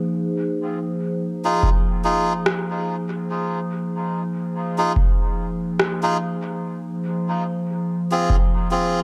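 A warbling, lo-fi pad opens this meditative ambient dub excerpt, holding a dark Fm7 chord with chorus and its own built-in reverb. At 1.4 seconds a reedy, breathy melodica joins with short stabs that trail off into dub echo, and a deep analog kick drum arrives just after at 1.6 seconds. An overdriven rim click, also fed through dub echo, sits up front from 2.5 seconds until 6.0 seconds. The groove moves at a slow 72 BPM in 4/4 with a light swing on the sixteenths, staying in F minor and tuned slightly flat of standard pitch. A moderate spring reverb gives the spacious, nostalgic mix its air, and the kick drops out at 8.5 seconds while the pad and melodica carry on to the end.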